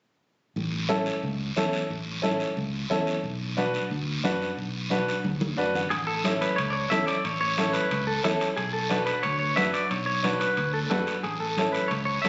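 Captured on a phone in a room with moderate studio reverb, compression and a dulled top end, this festive, sunny cumbia excerpt in A major at 180 BPM sets a round fingered electric bass, raspy guiro and ringing background congas under a brilliant, woody upright piano up front, moving between A and Bm, until a drum fill and piano fill lead at 5.9 seconds into a second section where a twangy, picked clean electric guitar carries the melody through spring and plate reverb and metal-shell timbales join in the background.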